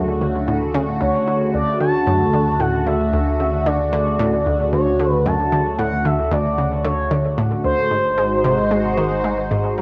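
A straight 4/4 pulse at 113 BPM drives this expansive, hypnotic stretch of sequencer-driven ambient space music, where a round, detuned analog pluck riff and a thick, fat bass sit beneath a swirling, phased pad of sustained chords moving from Dmaj7 to G#7 at 7.9 s, while from 1.0 s a smooth, expressive synth lead with vibrato carries the melody up front, the whole heard through a wet reverb on a home cassette recording.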